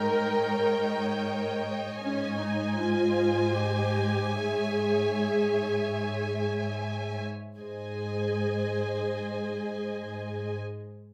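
Serene and lyrical, this slow romantic movement for string orchestra unfolds in free time, a short passage cut from a longer piece that slows down between 0.9 and 7.6 seconds before moving into a new section. Lush violin sections carry the melody and a second line with soft attack and expressive vibrato, one with a smooth top, while a dark, woody viola section sits close beneath them with light vibrato, and an up-front cello section holds a single low bass note with warm, expressive tone. Moderate studio reverb gives the ensemble a gentle sense of space as the harmony moves from Eb7/Ab through Ab to a shadowed Dbm/Ab.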